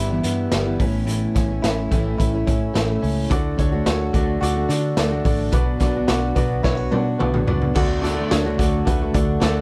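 A straight 4/4 pulse at 108 BPM drives this breezy, youthful jangly indie pop in D major, where a gritty, up-front garage drum kit with a boomy kick and pumping small-room sound plays a fill from 6.6 to 7.8 seconds, a round, foam-muted electric bass holds down the low end, a bright, direct-recorded clean electric guitar spins arpeggios over a woody jumbo steel-string acoustic set back in the mix, and a brilliant upright piano with audible action noise joins at 3.3 seconds, all in a dry mix.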